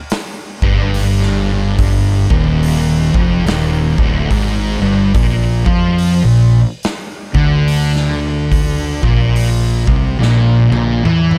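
Stoner and doom metal with a brooding, sludgy mood, this short excerpt cut from a longer piece moves at a slow crawl with a lazy swing on the eighth notes. A big acoustic rock drum kit opens the passage, its punchy kick, medium-tuned snare, hi-hat and toms ringing in a bright stone room that pumps around them. Two thick fuzz guitars join at 0.6 seconds with a dark, distorted, picked riff, one of them sitting more up front than the other. A fingered electric bass enters alongside them, overdriven and growly, played direct and through an amp and placed prominently in the mix. The harmony shifts from D minor to a B-flat power chord at 5.1 seconds, and the drums close with a fill from 10.2 seconds. The production is dark and dry, with little reverb.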